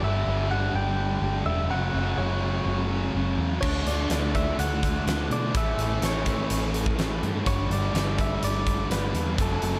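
A straight 4/4 pulse at 125 BPM drives this hazy, wistful shoegaze and dream pop fragment, cut from a longer rock piece and steeped in a lush hall reverb that gives the whole mix a dreamy glow. From the start, a clean, twangy electric guitar recorded direct carries the melody between A4 and G5, its compressed, picked tone trailed by analog delay. Beneath it, three picked guitars stack riffs: a thick, dark fuzz guitar thickened with ensemble chorus sits in the background beside a biting overdriven guitar washed in reverse reverb, while a tight, double-tracked distorted guitar adds a brighter edge. A vintage fingered bass, foam-muted, amped and round, anchors the low end from E1 to B2. At 3.6 s a huge arena drum kit arrives up front, with a punchy kick, fat snare, hi-hat and crash cymbal in a pumping hall room, as the harmony moves from Gsus2 and F#m through D and A before settling back on Gsus2.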